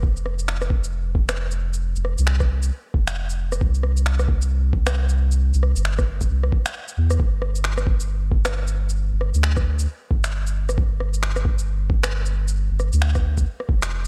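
Future garage at 134 BPM in 4/4, with a 16th-note swing that gives the groove a loping, shuffled gait, setting a melancholic, nocturnal mood in a short cut from a longer piece. A soft dub sub bass sits up front, deep and round with a mellow, triangle-and-square character, its notes sustained over a fast attack, thickened by tube saturation and pumping under sidechain compression. The electronic kick is muffled and thumpy, pitched down and compressed in a sampler style, overdriven and re-recorded in a small room, sitting up front alongside the bass. A quieter layer of electronic shaker, rim click and finger snaps enters at 0.2 seconds, carrying a tape-tinged, produced sheen and a touch of small-room ambience. The track repeats the same section twice, and the overall sound stays dry and close.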